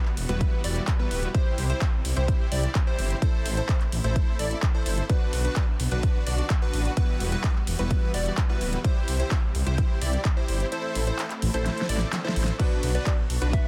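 Festival progressive house at 128 BPM in E minor, this powerful, emotional excerpt drives a punchy overdriven kick and a big-room kit with a huge snare and metallic hats under a menacing detuned saw bass, a thick pumping supersaw riff with dub echo, a catchy plucky unison arpeggio lead bathed in lush chorus, and very quiet bowed strings holding sustained chords over Emadd9, C, Am and Bm. The kick drops out at 10.7 seconds, a drum fill follows at 11.7 seconds, and a brilliant grand piano and a round, gentle struck synth melody slip in near the end.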